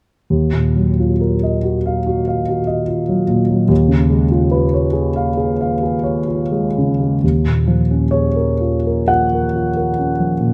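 Nocturnal and wistful, this impressionist classical excerpt for solo piano drifts in Eb minor at a rubato 59-74 BPM in 4/4, with the grand tuned to A4 = 441 Hz. The intimate, up-front concert grand reaches from a deep Eb2 bass to Gb5, its natural tone carrying audible action noise as the harmony moves from Ebmadd9 to Db9/Eb and settles on Ebm11 when a new section begins at 7.2 seconds. Close, detailed microphones capture the instrument within a moderate concert hall reverb, and the fragment breaks off at 10.5 seconds, cut from a longer piece.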